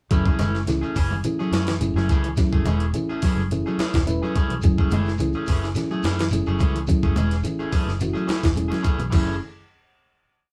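A funky, driving afrobeat groove at 107 BPM in F# minor opens at once on a full band playing live in one room with moderate studio reverb, settling on an F#m9 chord. The sampler-style drum kit sits up front, compressed and pitched up, with a gritty texture, a thumpy kick, a high-tuned snare, hi-hat and crash cymbal laying down an afro kit groove. Beneath it, the fingered electric bass plays a syncopated riff in a dark, round, foam-muted tone. The clean electric guitar picks a background ostinato of arpeggios, while a second, twangy guitar at the edge of break-up strums rhythmic stabs in upper chord shapes. A reedy electric piano, heard through its built-in speakers, adds syncopated stabs in rootless voicings and takes a fill at 3.5 seconds. Very quiet congas with hard hands and a thick skin, along with a grainy, mellow shekere in the background, fill out the percussion, both close and dry, until a drum fill at 8.6 seconds leads to a final chord at 9.1 seconds.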